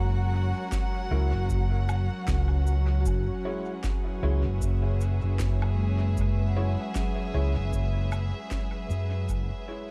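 A gently swung 4/4 groove settles in at 0.7 seconds, when a deep analog kick arrives alongside a woody, tape-warm electronic snare, shaker and woodblock that sit low in the mix and trail dub echoes. This is a spacious, peaceful stretch of ambient dub, cut from a longer piece. Underneath, a round, punchy overdriven fingered electric bass sits up front. Dark chamber strings hold sustained chords with light vibrato and a soft, sul tasto touch, while a metallic, ringing vibraphone with a fast motor vibrato spins arpeggios in the background through its own dub echo. From 1.1 seconds a clear, polished upright piano adds echoing stabs behind the other parts, and the whole passage fades out from 7.2 seconds inside a small room ambience.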